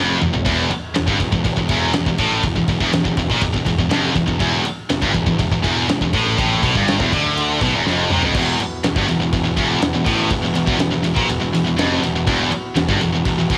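This heavy metal piece is cut from a longer track and opens at 0.0 seconds with a drum fill and three picked, high-gain electric guitars driving a low riff in E minor at 122 BPM in straight 4/4. A bright, up-front heavy guitar leads the riff, backed by a scooped guitar in the background, both carrying distortion and a cassette tape colour, while a very quiet double-tracked guitar plays the same riff. A growly picked electric bass, fuzzy and overdriven, sits in the background an octave below. The acoustic drum kit sounds big and dark, with a fat snare, a punchy kick, crashes, ride and toms, and a second fill at 7.9 seconds leads into a new section. From 8.4 seconds a light chamber organ with sparkling flute stops and a soft chiff adds sustained chords in the background, underscoring the dark, relentless mood. The whole has the light reverb and small-room feel of a home cassette recording.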